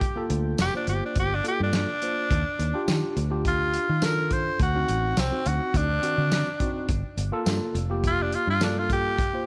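A raspy, forceful tenor saxophone takes the solo up front, its bright tone carrying a light vibrato over a brooding, mournful straight-eighth soul blues cut from a longer piece. Beneath it, a fingered electric bass sounds round and foam-muted, while a dry soul drum kit with a fat snare, tight kick, hi-hat and tambourine has a saturated, rolled-off top. A clean tine electric piano enters at 0.2 seconds through its built-in speakers, and the whole sits in light reverb and small room ambience as the chords move from Gm7 through Ebmaj7 and D7b9 back to Gm7.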